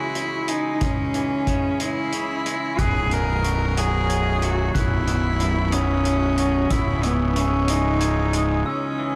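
Cinematic and soaring, this short post-rock passage moves at a slow 61 BPM in a straight 6/8, cut from a longer piece. A rich, earthy cello carries the melody up front from the start, its airy bow and light vibrato giving it a slightly nasal, boxy character, while a clean, twangy electric guitar picks arpeggios beneath it, both trailed by a diffuse ambient delay. A soft-mallet drum kit with a punchy kick, hi-hat and rolled-off top keeps time from 0.1 seconds. At 2.8 seconds, as the harmony moves from C#m to Bsus2, a fuzz-overdriven fingered bass arrives low and up front, joined by a bell-like glockenspiel ringing high in the background with soft plastic mallets. The chords return to C#m before a brief break at 8.7 seconds, and the whole mix is soaked in a wet cathedral reverb that makes it feel dreamy.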